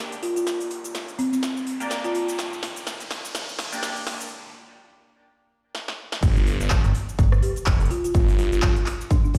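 A nasal, band-passed chord stab with phaser and delay and an electronic riser open this bouncy, gritty bass house excerpt in G minor at 125 BPM with a swung 16th feel. They are joined by a woody soft-mallet folk marimba, a crisp, punchy big-room dance kit of snare, hats, claps, rim, cabasa and crash, and a very quiet, muffled cloth-damped acoustic kit, building through drum fills to a break at 4.3 seconds. The drop lands at 6.2 seconds with an impact, an up-front punchy electronic kick, a swirling, thick phased detuned saw bass with tube saturation and sidechain pumping, and a brief metallic, overdriven FM bass stab, all in a stone-room reverb.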